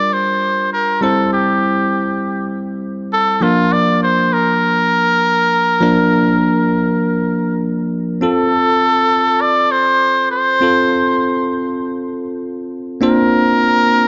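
A cup-muted trumpet carries the melody up front, its soft, veiled tone touched with light vibrato and a digital delay, in this romantic, uplifting pop fragment cut from a longer piece at 100 BPM in F major. A bell-like tine electric piano plays clean, bright accompaniment throughout, moving from Gm7 through C and Bb before the music settles onto F at 8.2 seconds and closes on Bbadd9. A lush hall reverb surrounds both parts, and the overall sound has a smooth, rolled-off top.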